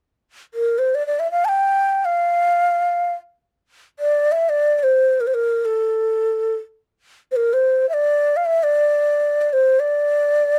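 Closely and intimately recorded with a touch of reverb, this soulful, hypnotic fragment of Turkish music sets a breathy, mellow end-blown ney up front as the lone voice from 0.5 seconds, its reedy cane tone drifting between A4 and A5 with soft attacks and vibrato.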